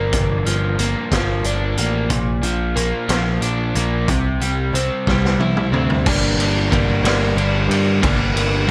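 Cool and moody, this short indie rock excerpt moves at 61 BPM in a straight 6/8, centered in G dorian. An overdriven, double-tracked electric guitar carries the riff up front, its picked tone compressed, warm and driven, while a warm, punchy picked electric bass runs underneath with a direct sound. A raw garage drum kit of crash, ride, hi-hat, snare, toms and kick enters at 0.1 s, saturated and gritty, mid-forward, with a medium-tuned snare and a rolled-off top. The harmony moves from Gm7 through Bb and C before settling on Gm at 6.1 s, just after a drum fill that begins at 5.1 s. Light reverb and a small room ambience frame the whole performance.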